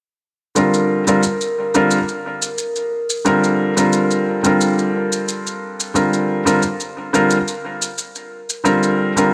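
At 0.6 s a felt-muted upright piano, a shaker and a bronze singing bowl all begin together in this meditative, hypnotic organic downtempo piece, which is cut from a longer work and moves at 89 BPM in a straight 4/4. The piano carries the accompaniment up front, its thin felt giving a soft, mellow, intimate tone with audible action noise, and a delay trails its notes as it rests on a Gm7 chord within G minor pentatonic. Beneath it, an electronic, produced shaker keeps time, re-recorded in a small room. In the background the bronze singing bowl sounds a single Bb4, struck with a suede striker and close-miked, ringing full and metallic with slow beating while staying dry. A moderate, lush hall reverb with a 2.1-second decay surrounds the music until all three parts stop at 9.3 s, and the tuning sits slightly high, at A4 = 441 Hz.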